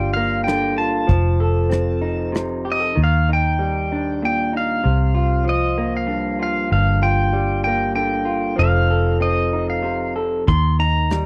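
A dry, close 1970s-style studio sound frames this melancholic, heartbroken acoustic folk-pop ballad at 96 BPM in 3/4, where a bright, twangy pedal steel guitar carries the melody with fingerpicked slide and volume swells over a slightly broken-up, lo-fi electric guitar through a small old amp, a round, foam-muted vintage fingered bass sits up front, and a dark, smooth brush drum kit with a punchy kick, hi-hat and rim click plays from 0.5 to 2.5 seconds and returns at 10.5 seconds, as the chords move from Gm7 and F7 through Ebmaj7 and C7sus4 before landing on Eb.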